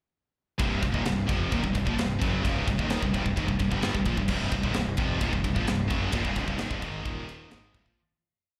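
A straight 4/4 pulse at 130 BPM drives this short, relentless heavy metal piece in C minor, tuned slightly low to A4 = 437 Hz, with every part entering together at 0.6 seconds. A tight, polished drum kit sits up front with bright cymbals, a high-tuned snare and a tight kick, laying down a big rock groove across crash, ride, snare and kick. Two high-gain electric guitars play a picked power-chord riff: a scooped one sits forward in the mix, while a second, heavier one with slapback echo stays in the background. Underneath, a growly fuzz-overdriven fingered bass drives in eighth notes, doubling the guitar riff low in the register. The dark riff holds on C minor, touching an Eb5 chord at 7.1 seconds before returning to C minor, and the sound, heard as if through a club PA with a little room reverb, fades out from 6.1 seconds to the end at 8.0 seconds.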